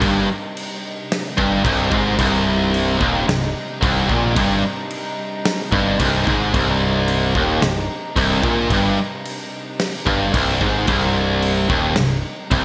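Heavy metal in C minor at 110 BPM, this dark, aggressive 12.6-second excerpt moves with a half-time feel and rests on a single C minor chord throughout. Two distorted electric guitars play low riffs from start to finish, one overdriven and placed up front with a bright, picked edge, the other tight and distorted. Beneath them, a growling picked electric bass adds overdriven, direct-and-amped grit in the lowest register. An acoustic drum kit drives the track with a punchy kick, fat snare and bright crash cymbal, all treated with gated reverb. A very quiet, dark string section holds sustained chords, bowed sul tasto with a soft attack and a smooth, floating tone. The production is bright in a 1980s digital style, with a lush hall reverb and small-room ambience around the band.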